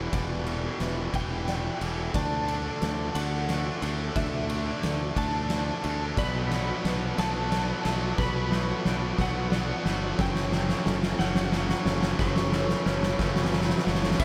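A slow, brooding post-rock build-up in 6/8 at 60 BPM opens on Em7 before moving to Dadd9. A warm, slightly broken-up slide guitar carries the melody through analog chorus and a diffuse ambient delay. Beneath it sit a bright overdriven guitar riff, a growly, punchy fingered bass, and very quiet layers of veiled con sordino strings, felt-muted upright piano arpeggios with audible action noise, and clean, twangy guitar arpeggios. From 0.1 s an oversized, low-tuned drum kit plays a fill throughout, up front with a boomy kick, fat snare, dark crash and ride cymbals and a gritty, pumping room. At 6.2 s a second, compressed distorted guitar riff joins quietly as the chords shift to Bm7 and then F#m, the dreamy, cinematic mix soaked in lush hall reverb.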